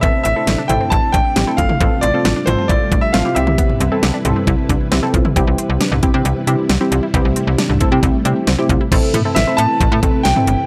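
A straight synth-pop groove sets a cool, melancholic tone, driven by a layered electronic drum kit with a knocking kick, fat snare and crisp hats, and a snappy, metallic slap-like FM bass, both up front. A punchy, sawtooth polysynth comp with chorus plays funky chords over a full-bodied, vintage string machine cello pad with ensemble chorus, while a lush, detuned unison pluck adds arpeggios with tape echo until 8.9 seconds. On top, a clear, smooth concert grand piano carries the melody, pausing at 5.1 seconds and returning at 9.3 seconds, all captured in a dry, gritty recording cut from a longer piece.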